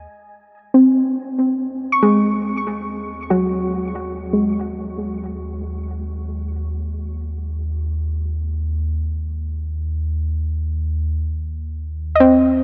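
This ambient piece, cut from a longer work, feels reflective and spacious, floating in a huge, wet reverb that rings for about 8.6 seconds. A soft, rounded synth pluck carries the arpeggios throughout, sitting up front with a fast attack and decaying notes, its tone shaded by chorus, tape echo and a ring-modulated edge. Beneath it, a deep, rumbling synth drone holds a single low note with an ominous, dark weight, fading in gradually from 0.1 seconds to the end at 12.6 seconds. The drone's slow attack and long release are colored by its own reverb and a phaser. The overall sound is muted at the top, leaving a soft, enveloping haze.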